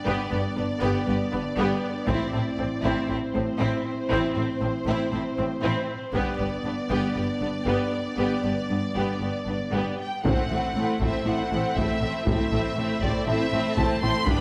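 Opening on a G chord, a lush violin section carries the melody over dark, soft-edged French horn chords, joined almost at once by a second violin line, clear and distant violas, a rich cello and double bass foundation, all bowed with vibrato in a wet scoring-stage reverb, as this dramatic, heroic cinematic orchestral passage in A dorian at 118 BPM builds until 10.2 seconds, punctuated by brief hard-stick taiko bursts at 2.1 and 6.1 seconds before the vintage, band-limited drums return and drive on from 10.2 seconds to the end of the cut.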